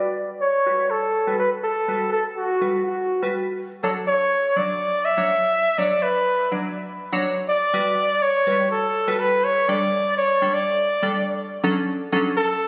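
A warm, punchy flugelhorn carries the vibrato-touched pop melody up front from the opening, over a glassy, crystalline wavetable pluck with chorus whose detuned, nasal attacks decay quickly through Gmaj7, Dmaj7 and A7sus4 chords. In this upbeat, euphoric excerpt, a filter sweep drives a build-up that gives way to a drop at 11.6 seconds, landing on Dmaj7. The close-miked horn sits in a lush hall reverb, captured on a phone in the room.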